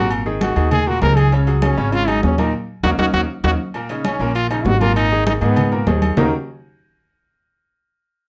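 A punchy, brilliant solo trombone with vibrato leads this fiery, danceable salsa in Eb minor at 198 BPM from the very start, over a bright baby grand piano with audible action noise and a woody, thumpy pizzicato upright bass, as thick-skinned congas and ringing agogo bells and timbales join at 0.1 s, the band hits an accent at 2.5 s, a drum fill arrives at 3.0 s, and it all sits in a moderate studio reverb.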